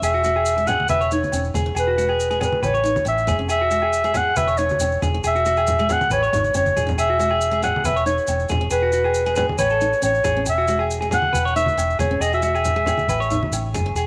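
Highlife guitar band music at 138 BPM in E major, with a warm, danceable mood, built on a looping Eadd9, C#m/E, Eadd9, A progression in this short excerpt. A breathy, mellow clarinet with vibrato and scooped notes carries the melody up front in a jazz style, over a boxy picked steel-string acoustic guitar, clean electric guitar arpeggios and a dark, round, foam-muted fingered electric bass. Ringing agogo bells, grainy maracas and thick-skinned, low-tuned congas, entering at 0.7 s and played with hard hands, fill out the percussion, with a drum fill at 6.4 s, all set in light reverb and small room ambience.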